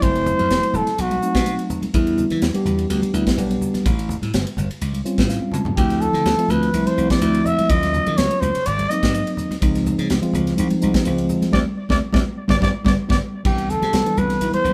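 Recorded live in one room with moderate studio reverb, this soaring, bright electric jazz fusion at 125 BPM in C major features a raspy, breathy growling trumpet with tape echo playing a solo melody briefly at the start and again from 5.8 s, over a mellow tine electric piano that adds fills, a glassy, punchy slap bass, a crisp, airy drum kit with a high-tuned snare and its own fills, and ringing congas in the background, with the band hitting accents from 11.5 s.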